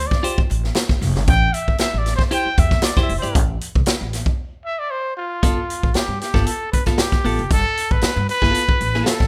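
Cool and hypnotic, this funk excerpt at 116 BPM opens with a breathy, whispered trumpet solo carrying slapback echo, intimate and up front in a mellow jazz style, over woody pizzicato upright bass, a punchy small-room garage drum kit with a rolled-off top, bright, twangy picked electric guitar, and a very quiet, hollow group handclap from 0.8 to 4.0 seconds, moving through Dm7 and Am7 to a break at 4.4 seconds before settling on G9 in a rough home-demo sound with light studio reverb.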